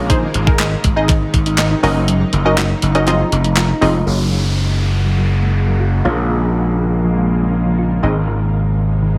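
A driving, bittersweet dance-pop excerpt opens on a drop, with a gritty, growly slap bass pushed up front under a shimmering, ethereal pad of sustained chords that carries an octave-up sparkle, chorus, built-in reverb and sidechain pumping. A round, tine-like thumb-piano synth pluck spins gentle arpeggios deep in the mix, while a crystalline, detuned wavetable pluck adds pumping accompaniment with chorus and a sweeping filter. A crisp 8-bit drum machine with a thumpy kick, medium-tuned snare, hi-hat and handclaps drives the opening, joined by a very quiet, close and dry group handclap. The kick drops out at 2.1 seconds, and the drums stop at 3.9 seconds. From 4.1 seconds a filter sweep takes over and an electronic downlifter descends as the chords move through Gbadd9 and Bbm7 before settling back on Ab, all sitting in light digital ambience.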